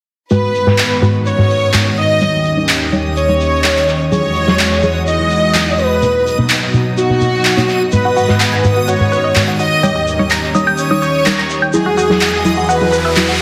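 A dense, heavily limited modern master with moderate stage reverb frames this bittersweet, driving progressive house excerpt at 126 BPM in G# minor, cycling through G#m7, D#7, Eadd9 and Bmaj7. A velvety, detuned synth lead with vibrato carries the melody, joined by a focused, close studio violin section on a second line, while a lush, thick unison pad holds sustained chords beneath a deep, dark chord stab with a ring-modulated edge. Tape-tinged electronic handclaps sit up front from 0.8 seconds, with a smooth, acoustic shaker and snare tucked into the background, and a reversed, granular swelling texture floats dreamily high above from 1.4 seconds. At 8.1 seconds a tight, wave-folded sequenced synth adds plucked arpeggios treated with phaser and delay. A background riser enters at 12.4 seconds as the passage pushes toward what comes next.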